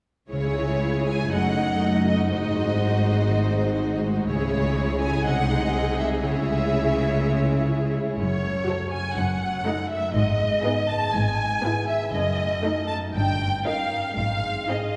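Urgent and dramatic, this classical string passage in C# minor moves at 121 BPM in 4/4 with a rubato feel. The first violins carry an expressive, vibrato-rich melody up front, while a focused second violin line, smooth violas and ringing harp arpeggios in the background fill the middle. Close cellos and soft-attacked double basses hold the bass until 14.6 seconds, all bathed in the long, wet reverb of a church, as the harmony passes through diminished and seventh chords to rest on G# at 14.2 seconds.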